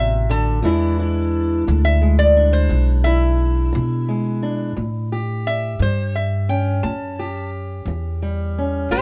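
This acoustic country blues passage, cut from a longer piece, moves at a slow 58 beats per minute in a 12/8 lilt with a straight feel, sitting in A mixolydian with the tuning set slightly high at A4 = 444 Hz. The mood is soulful and gritty. A lap resonator guitar carries the melody with fingerpicks and a steel-bar slide, its metallic, nasal voice up front, and it takes a slide solo through the opening 4.8 seconds. Beneath it, a boxy parlour steel-string guitar fingerpicks the accompaniment, while a pizzicato upright bass strung with steel gives a woody, dark foundation in the low register. The harmony moves from D7 to E7 early on and settles on A7 at 4.8 seconds as the second section begins. Close, detailed microphones and very little reverb keep all three instruments present and intimate.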